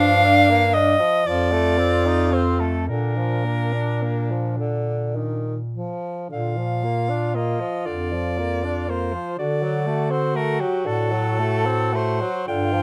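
A clear soprano saxophone carries the melody up front, its soft attack and vibrato shaping a tender, serene line in this classical piece for single-reed quartet. Beneath it, the alto saxophone sings a second line with light vibrato, while a warm tenor saxophone supplies the accompaniment with its own vibrato from a more distant, roomy position. A mellow bass clarinet anchors the bass, sitting prominently in the blend even as it carries a touch of room around it. The music moves in a gentle, unhurried 6/8 with a rubato feel, and its harmony drifts from Gm7 through F7 to Bb, with a D7 arriving at 9.4 seconds in the second section, which begins at 6.3 seconds. The sound is close and detailed with little reverb, and the passage is cut from a longer piece.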